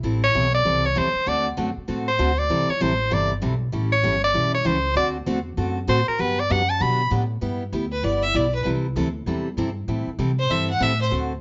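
Country swing with a playful lilt, this clip opens on an edgy, punchy soprano saxophone solo with jazz-style vibrato that gives way at 7.9 seconds to a clear, biting fiddle, bowed with light vibrato and sounding a little distant, while a bright, full-bodied picked jumbo acoustic guitar and a woody pizzicato upright bass carry the chords through Am7, D7 and Gmaj7 in a moderate club reverb with a softened top end.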